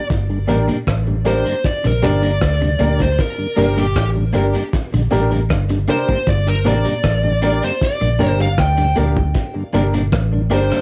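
Hypnotic and meditative, this roots reggae cut at 78 BPM sits on a single G minor chord while a smooth, overdriven lead guitar solos up front through cassette tape and tape echo, over a round, punchy muted bass and a cloth-damped, thuddy drum kit of hi-hat, tight kick and rim click that sounds gritty, muffled, lo-fi and rolled-off. A mellow tonewheel organ with key click and slow rotary speaker stays in the background beside a clean, compressed picked guitar, while a second very quiet, dark guitar plays low arpeggios and a dark baby grand piano adds long-sustaining stabs. The home cassette recording has light reverb, and it is cut from a longer piece.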